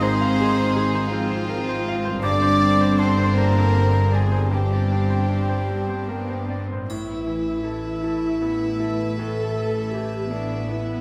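An airy concert flute with crisp attack and lifted highs floats high above this longing, moving cinematic film cue, a short cut from a longer orchestral score in a slow, rubato 6/8 at roughly 49-55 BPM, tuned to A4 = 439 Hz. A soft-attack symphonic violin section carries the melody in pure, floating sul tasto tones. A second, rich studio violin section, a smooth-topped solo clarinet in the background and a mellow French horn section holding sustained chords weave around it. Beneath them, a brilliant, intimate grand piano with audible action noise and long sustain supplies accompaniment alongside dark, woody viola and a ringing, thumb-plucked harp playing arpeggios. A close cello section and a pure, floating double bass section, both bowed sul tasto, anchor the bass. The harmony moves from Ab6 to Gsus4. The flute, clarinet, horns and melody violins fall away by 6.5 s. At 6.9 s the music opens onto Asus2 with a faint, dark-toned triangle, while piano, lower strings and the second violins continue to 11.0 s, all bathed in a wet scoring-stage reverb.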